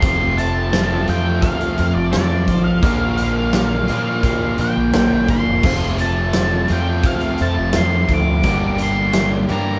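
A stone room's moderate reverb wraps this brief classic rock excerpt, which sounds like a band playing live together, brooding and swaggering at 86 BPM in a straight 4/4. A huge arena drum kit sits up front with a punchy kick, a medium-tuned snare, hi-hat and crash, carrying a natural big-room sound until 9.7 seconds. Beneath it, a growling fingered electric bass is overdriven and punchy, while a bright, compressed distorted electric guitar plays a riff and a sludgy overdriven guitar plays another riff from the background. Over the top, an octave-fuzz lead guitar carries a dark, fuzzy melody between D5 and D6. Very quiet in the mix are a woody, slightly detuned upright piano, a boxy picked acoustic archtop guitar and a full tonewheel organ with slow rotary swirl and chorus vibrato, all moving through F, Bb, F and G minor.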